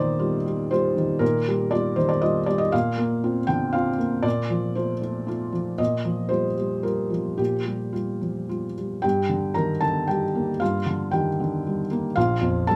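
A felt-muted upright piano plays alone throughout this brief, intimate and tender fragment of neoclassical minimalist music, its mellow, hushed tone sitting up front with audible action noise and a natural, close character. In a flexible, rubato triple metre, it spans from deep bass to high treble, circling through Ebadd9/Bb, Bbadd9 and F/Bb before turning toward Gm at 9.0 seconds and settling on a bare Bb5 at 12.2 seconds. A modest small-room ambience gives the soft playing a little air.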